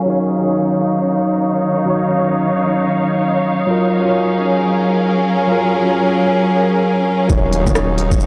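Future garage with a nocturnal, ghostly mood, swung 16ths and a pulsing sidechain pump on the piano, strings and bass. A clean tine electric piano, heard through a combo amp with analog delay, sits up front as accompaniment beside a lush, bowed string section with vibrato holding sustained chords, the harmony moving from Ebm7 to Gbmaj7 under a filter sweep. Beneath them, a very quiet, breathy wind-like noise texture drifts with slow attack and long release. At 7.3 seconds the chords return to Ebm7 and the low end arrives. A menacing detuned saw bass with tube saturation enters there, along with a muffled, thumpy sampler-style kick and an organic electronic kit of bongos, smooth hi-hat, rim click and shaker, softened by low-pass filtering and studio reverb. The whole recording has a dry, gritty hardware character with transformer saturation, vinyl crackle and a low-pass filter.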